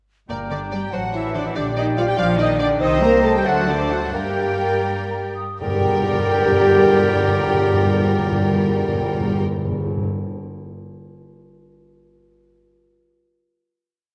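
At 0.3 seconds a full symphony orchestra and a round, up-front timpani strike together on G2, launching a stormy, urgent classical-period movement in G minor, in a quick 6/8 of about 78 to 97 dotted-quarter beats per minute. A lush studio violin section carries the melody in repeated notes and chords that follow the tune's rhythm. A smooth-topped chamber violin section doubles it an octave higher, and a very quiet viola section doubles it in unison. A clear clarinet, a vintage-toned oboe and a pure, hollow flute sit in the background with sustained chords in the tune's rhythm, the flute also answering at phrase ends. A bassoon entering at 0.9 seconds adds a counter-melody, dark French horns carry the melody in the background, and a mellow, punchy trumpet section doubles the tune from a distance. Cellos and double basses anchor the bass as the harmony moves through G minor, C minor and D7, the tempo slows from 2.2 seconds, and the timpani returns at 5.6 seconds under a final chord that rings into the scoring stage's moderate reverb over a faint mains hum.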